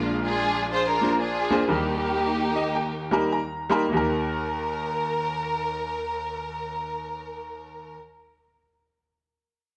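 Uptempo gospel in Eb major, reverent and hopeful, with a swung 4/4 feel between 96 and 127 BPM: a lush, bowed string section carries the melody with vibrato and portamento over a clear, worn grand piano accompaniment, both up front in a moderate echo-chamber reverb, while the tempo slows over the first 3.9 seconds, the harmony moves from Bb7 to Eb, and the piano plays a fill from 2.2 seconds in this short cut from a longer piece.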